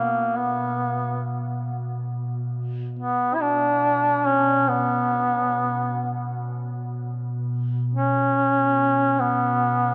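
A clear duduk and a glassy FM pad sound together from the very start of this short passage of Caucasian folk lament, which flows in free time with a longing, mournful air. The duduk carries the melody alone and up front, in a low, narrow range, its vintage folk-style tone shaped by vibrato and scooped notes. Beneath it, the pad holds a single low drone with a slow attack and long release, its ethereal sound thickened by ensemble chorus and its own reverb. Around 1.7 seconds the music moves into a new section, and both parts carry on to the close at 9.9 seconds. A wet cathedral reverb with a long decay surrounds the dark production, and the passage is cut from a longer piece.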